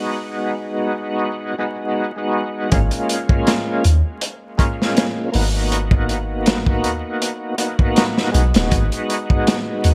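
An overdriven tonewheel organ, thick and gritty with key click, chorus vibrato, slow rotary speaker, tremolo and tape echo, opens this melancholic, smoky trip hop excerpt at 80 BPM alone over G#m7, until at 2.7 seconds a soft, round 808-style bass and a crunchy, saturated breakbeat kit with a tight kick and gated reverb enter, moving through C#6/G# and Bmaj7/G# under bright 1980s-style digital production, light reverb and vinyl crackle.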